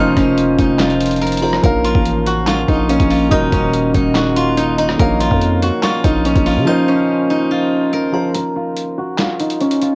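A fingerpicked steel-string zither carries the melody up front in this melancholic, eerie trap piece, its silvery, ringing tone softened by a low-pass filter, at 143 BPM in Bb minor with a half-time feel. Beneath it, a concert grand piano with deep bass and long sustain plays the accompaniment through a cassette-tape haze, while a very quiet, dark sawtooth pad holds sustained chords with a slow attack and built-in reverb. A delicate, tinkling FM bell sits in the background as a second line, treated with chorus, phaser, tape echo and cassette tape. A growling, buzzy 808-style bass anchors the low end until 6.7 s, and a gritty, overdriven sampler-style kit with thumpy kick, snare, rim click, hi-hat and handclaps drops out from 6.7 s to 8.3 s. The harmony moves through Fsus4, Bbm and Ebm, and from 8.3 s the zither and drums carry a break with a filter sweep, all within a lo-fi home cassette sound and light reverb, cut from a longer piece.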